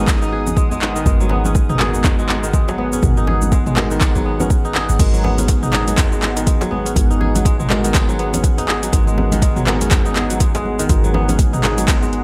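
A smooth, detuned sawtooth pad holds a G#m9 chord in the background while a bright, ringing kora picks arpeggios through digital delay and a muted, boxy felt piano adds soft stabs, the three pumping to the sidechain alongside a deep, boomy 808-style bass on G#1. From 0.1 seconds an overdriven, up-front electronic kick and a layered deep house kit with metallic hats, handclaps, shaker, toms and crash drive a swung 122 BPM afro house groove in G# minor, with a very quiet, close djembe played with soft hands underneath and equally soft, close congas joining at 0.5 seconds. The mood is spiritual and warm, with light studio reverb and a bright 1980s-style digital sheen on this excerpt cut from a longer piece.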